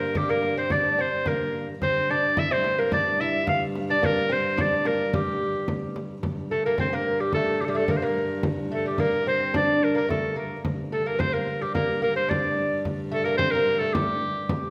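Ancient and driving, this medieval dance in two is cut from a longer piece, with a bright, vintage-toned clarinet carrying the melody up front in a classical style. Beneath it, a delicate, fingerpicked lute on double nylon strings plays a second line, and a close, intimate viola da gamba holds a ringing low drone with light vibrato and an airy bow. A deep, large frame drum enters at 0.1 s, close and dry, while a recital hall's reverb fills the space, and the music moves into a new section at 6.2 s.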